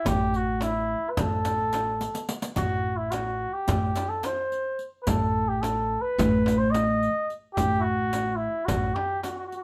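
A live band plays together in one room under light reverb, giving this short cut from a longer piece a roomy sound. It is a makam ensemble in a 9/8 metre, with a longing, melancholic mood. Up front, a cup-muted trumpet carries the solo melody in a mellow, veiled classical style that feels slightly distant, moving between E4 and D#5. A woody, thumpy pizzicato upright bass on gut strings sits equally close, holding a low A1. A crisp, deep metal-shell darbuka played with soft hands sits in the background, while a frame drum struck with hard hands and a close, dry riq with dark jingles fill out the percussion, with a drum fill at 2.0 seconds.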